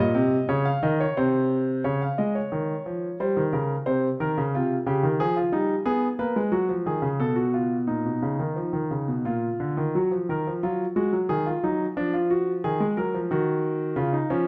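A clear concert grand piano plays solo throughout this serious, contemplative baroque-style two-part invention, moving at 89 BPM in 3/4 with a straight feel. The passage opens in Db major and turns to Eb minor at 5.9 s, with an opening idea that returns at 9.9 s. The piano sits up front with a deep bass and long sustain, captured by close, detailed microphones in a recital hall whose moderate reverb surrounds this cut from a longer piece.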